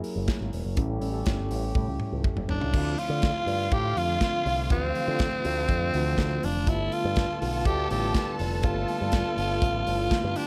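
This disco excerpt sounds polished and close, set in light reverb and studio ambience, with the drums and tenor saxophone up front and the keys, horns and strings held in the background. At 122 BPM in a straight 4/4 feel, the mood is sultry and driving, built over chords moving from F#9 and A7 to Dm7 and then G9. A modern studio drum kit with a tight kick, medium-tuned snare, hi-hat, toms and crash drives the groove, its gated reverb giving an airy snap, and a fill from 1.8 to 2.7 seconds leads into the next section. A picked electric bass, warm and direct, runs through an envelope filter beneath a mellow tine electric piano heard through its built-in speakers and a vintage-toned French horn section holding sustained chords. At 2.5 seconds a growling tenor saxophone takes the melody, bright, breathy and raspy with vibrato and a punchy edge, and a dark, woody string section joins at 2.7 seconds with a lush, bowed second line.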